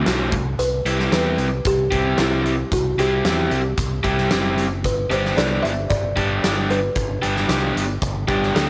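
A straight four-beat pulse from a big, natural-sounding rock kit of tight kick, snare and hi-hat drives this upbeat, carefree indie rock excerpt, where a raw, overdriven, double-tracked garage guitar picks an up-front riff over Cmaj7 moving to G, a growling, bright fingered bass adds its own overdrive underneath, and from 0.6 s a woody, airy kalimba plucks a mellow melody with slapback echo, all set in a small room with light reverb.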